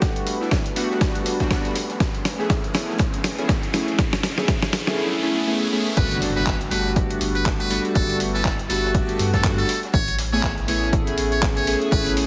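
A swung 121 BPM deep house groove in G major, relaxed and sunny, where a punchy electronic kick, a gritty sampler-style kit of claps, hats and snare, and a background open jazz kit carry a build-up with a drum fill, a very quiet breathy pad and a background riser under glossy chorused polysynth stabs with delay and sidechain pumping, until the drop at 6.0 s brings in a round, dark analog bass and a buzzy muted trumpet melody with scooped notes and delay, all in a heavily compressed radio sound with lush hall reverb.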